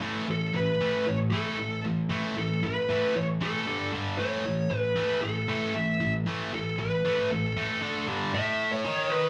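A bright, double-tracked high-gain rhythm guitar drives this energetic, anthemic rock fragment with a picked riff, while a darker, distorted lead guitar enters at 0.3 seconds to carry the melody above it, both sitting up front in the mix. The two electric guitars share a moderate large-room reverb that gives the impression of a band playing live together. Power chords on A and G dominate, with a brief turn to D near the end before the riff settles back on A at 8.3 seconds.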